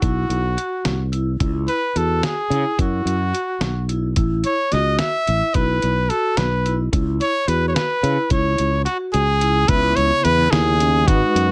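Progressive instrumental band music in an intricate, tense 5/8 at 217 BPM in C# minor, this excerpt has a bright, punchy trumpet carrying the melody up front with light vibrato, over ringing, close-miked vibraphone arpeggios, a growly fretless electric bass, and a compressed, pitched-down sampler-style drum kit with a thumpy kick. The kick and snare drop out from 9.1 to 9.7 seconds, and at 9.7 seconds a barky tine electric piano enters in the background with light overdrive and fast tremolo as the harmony settles on C#m7. Light reverb surrounds the whole.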